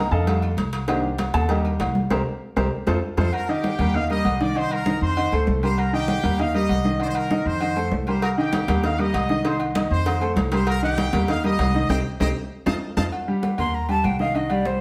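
Salsa at a festive, sunny 196 BPM, this fragment opens with a brilliant upright piano, its action noise audible, leading over a woody, thumpy pizzicato upright bass, ringing congas set in the background, close metal-shell agogo bells and timbales, and a round, saturated low cowbell; a punchy trumpet section carries the melody from 3.2 seconds to 13.0 seconds over Cm7 and F7 changes, and a breathy jazz flute with vibrato, crisp chiff and plate reverb steps up front at 13.6 seconds, all heard from further back in a reverberant studio.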